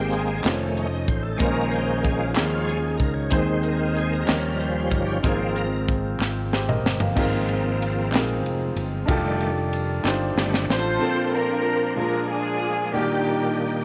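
A slow, hopeful gospel passage in 6/8 at 62 BPM in Ab major opens with a shouting, lightly overdriven tonewheel organ soloing over warm grand piano, fingered electric bass, a very quiet mellow brass section, faint crisp handclaps and an airy, up-front fusion drum kit with a high-tuned snare and fills around 6.2 and 10.0 seconds, as chords such as F7b13, Bbm11 and Eb9sus4 move through a soulful progression before veiled, con sordino strings take the melody at 10.7 seconds over Bbmaj9 and Bb7 harmony in a moderate plate reverb.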